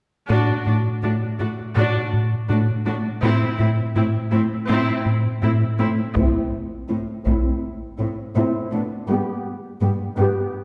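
An intense, clear viola section sits up front, its bowed vibrato tone softened by a low-pass filter, over a rich, lush cello section and a mellow, sawtooth-and-square synth bass riff in this brooding, tense hybrid orchestral and electronic film cue cut from a longer piece. The synth bass drops out at 6.0 s, and at 6.2 s a heavy-sticked taiko ensemble strikes until 7.6 s as a build-up and filter sweep carry the harmony from A minor to G. The music is heard from further back in a wet scoring stage reverb.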